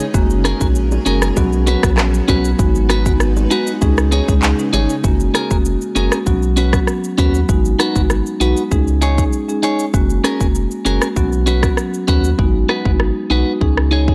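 Summery and bouncy, this dancehall groove sets a punchy, layered electronic drum kit of kick, metallic hi-hats, handclaps, rim click and shaker against a round, deep sine sub bass, a warm marimba and clean, compressed, picked electric guitar arpeggios bathed in spring reverb, while a blurred, evolving granular cloud pad pumps in the background and very quiet, low-tuned vintage bongos join it until the pad ends at 5.0 seconds, the hi-hats dropping out at 12.4 seconds, all in a dry, gritty, transformer-saturated sound.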